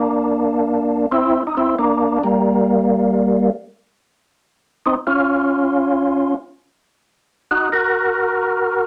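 A fat, percussive tonewheel organ plays alone and up front, its key click and second-harmonic percussion ringing through a slow rotary speaker and chorus vibrato as it moves from Bb6/9 to an unharmonized stretch at 3.7 seconds and on to Eb minor at 6.4 seconds, giving this greasy, bluesy jazz fragment, cut from a longer piece, a swung 91 BPM feel in 4/4 within a moderate studio ambience.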